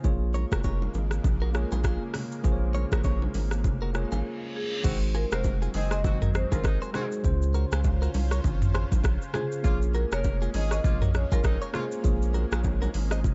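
A thick, saturated sub bass and an overdriven electronic afro-pop drum kit with a deep kick and metallic hats sit up front in this joyful, sunny afrobeats excerpt at 100 BPM, swinging gently over Bbm7, Ab7 and Dbmaj7 chords. A worn, slightly out-of-tune tine electric piano, a lush detuned pad with chorus and phaser, background congas and bongos, and a bright, clean direct-recorded guitar riff with digital delay fill out the groove. A reverse cymbal sounds at 4.1 seconds and a short break begins at 4.2 seconds; during that break a woody marimba melody with delay enters at 4.6 seconds, and a mellow, distant horn section follows at 4.8 seconds, all within a dark, dry production.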